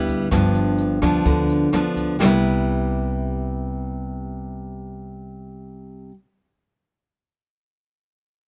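A dry recording puts a full-bodied, fingerpicked nylon-string guitar up front, with fresh strings and audible finger squeak, over a woody, growly pizzicato upright bass in this relaxed, breezy bossa nova fragment at 128 BPM in C major. A distant, roomy brush kit with a punchy kick, rim click, hi-hat and a rolled-off top plays only until 2.3 seconds. The harmony moves from G7 to Cmaj7 at 2.2 seconds, and just after that the guitar and bass carry on as a duo.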